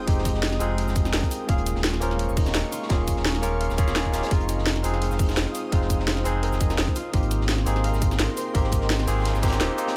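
Liquid drum and bass at 170 BPM in 4/4, this lush, rolling excerpt is built on a gently swung sixteenth-note feel and a chord cycle of Fm9, Eb9sus4, Fm7 and Abmaj9. A bright, barky tine electric piano carries the accompaniment through a combo amp with digital delay, while an ethereal, detuned pad holds sustained chords in the background, its slow attack and long release softened by ensemble chorus, built-in reverb and sidechain pumping. A fingerpicked concert harp rings out delayed arpeggios behind them. The deep, full sub bass with octave sits up front with tube saturation, alongside a tight, overdriven electronic kick and a garage kit whose cracking snare, cabasa and hi-hat are pushed forward with overdrive. Underneath, a gritty, high-tuned breakbeat kit with a rolled-off top adds texture in the background. A very quiet sub drop and noise sweep flicker briefly at the start of the excerpt and return from 9.0 seconds, and the kick drops out at 9.6 seconds, all within a small room ambience.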